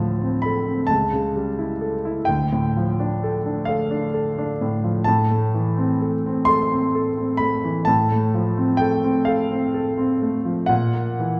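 Heard from further back in a recital hall with a wet, lingering reverb, this melancholic, wistful romantic nocturne for solo piano is cut from a longer piece and moves at a slow, rubato 43 BPM in 12/8, the clear concert grand ringing with deep bass and short sustain as it drifts from Dm7 through A7/C#, Dm, Am and F/A before closing on an unsettled A# chord near 10.7 seconds.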